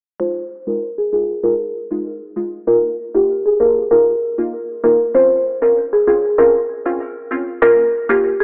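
Dancehall at 97 BPM in F minor, this short cut from a longer piece has a sultry, tough mood. A woody, buzzing marimba carries the up-front melody from 0.2 to 8.4 seconds, with crisp, detuned wavetable chord stabs under it, shaped by a phaser, over Fm7, Ebsus2, Dbmaj7 and Bbm. A filter sweep runs throughout, and a lush hall reverb and a telephone-like tone give the whole a boxy character.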